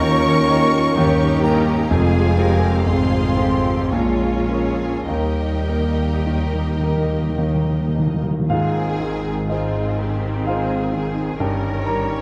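Passionate and lyrical, this slow, rubato Romantic excerpt in Ab major and 3/4 sets an up-front concert grand piano with deep bass carrying the melody, joined by lush, vibrato-rich violins in the background, while a second violin line and a pure, hollow, very quiet flute (until 7.9 seconds) sit above expressive, distant violas with portamento, mellow French horns holding chords, focused cellos and rich double basses, and soft-mallet timpani with a round tone entering at 5.1 seconds for a fill, all captured with close, detailed microphones in a moderate scoring-stage reverb.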